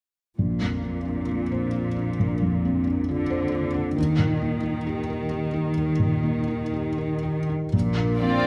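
A felt-muted upright piano, mellow and intimate with audible action noise, opens this tender, uplifting cinematic score in Bb major alongside a focused, up-front cello section, moving slowly and rubato at 58-68 BPM through Bbadd9 and Eb chords. A thumb-plucked concert harp adds ringing arpeggios at 7.7 s, and at 8.2 s the violin sections arrive with a lush, expressive melody and a second line, joined by a distant viola section in accompaniment. The strings carry vibrato, with portamento in the violins, all set in a moderate scoring-stage reverb, and the excerpt is cut from a longer piece.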